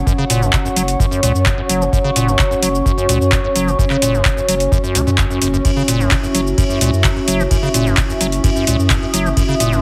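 Opening at 0.0 s on an F#5 chord, a moody, detuned sawtooth pad with chorus and phaser and a thick, saturated sine sub bass pump alongside a warbling, lo-fi, nostalgic tape-like pad, before a squelchy, resonant square-wave acid riff with tube saturation, a deep electronic kick and a booming analog drum machine of metallic hi-hat, ride cymbal, cabasa and handclaps join at 0.1 s in this trippy, playful acid house excerpt at 129 BPM in straight 4/4, all set in a moderate spring reverb with a heavily compressed, radio-like sound.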